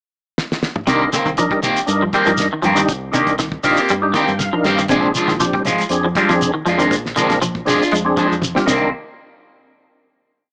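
Hypnotic and intense, this short afrobeat piece in C minor moves at 119 BPM with a light sixteenth-note swing, opening with a damped 70s drum kit fill on a pickup bar before the full band drops into a groove at 0.9 seconds. The drums are dry and fat-snared with a tight kick, dark cymbals and a rolled-off top, playing an afro kit groove alongside a grainy, mellow shekere. A deep dub fingered electric bass, round and dark, carries a syncopated riff beneath a percussive tonewheel organ that plays lightly overdriven, rootless chord stabs with key click, chorus vibrato and a slow rotary speaker, adding a fill around 3.9 seconds. Two electric guitars fill out the middle: a bright, clean one picks an arpeggiated ostinato through an ensemble chorus, while a twangy, slightly broken-up one sits up front with phaser-coloured strummed stabs in upper chord shapes. The harmony rests on Cm7 before shifting to Bb7 and returning to Cm7, and a final drum fill leads into a closing hit at 8.9 seconds, all heard through a moderate club reverb and a small-speaker sound.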